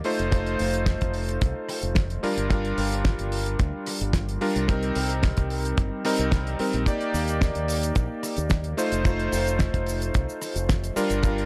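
A straight 110 BPM groove in 4/4 drives this cosmic, groovy nu-disco excerpt, where a tight, dry kick sits up front beside a damped 70s kit of hi-hat, rim click, shaker and fat snare with rolled-off top and small room ambience, an envelope-filtered fingered electric bass enters at 0.2 seconds in the low register, and a bright, clangy, chorused electric grand piano with long sustain, sidechain pumping and dub echo cuts through over F7, Gm7, Cm7 and Ebmaj7 in a dark, studio-reverbed production.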